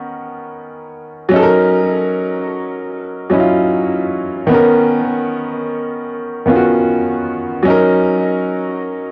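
Hip hop with a dreamy, cosy mood at 76 BPM, swung on the 16ths, built around a lone upright piano that sounds brilliant, woody and vintage, sitting up front with cassette tape colour and tape echo as it moves between Bmaj9 and F#6 chords in a small, wet room on a home cassette recording, a short cut from a longer piece that changes section at 4.5 seconds.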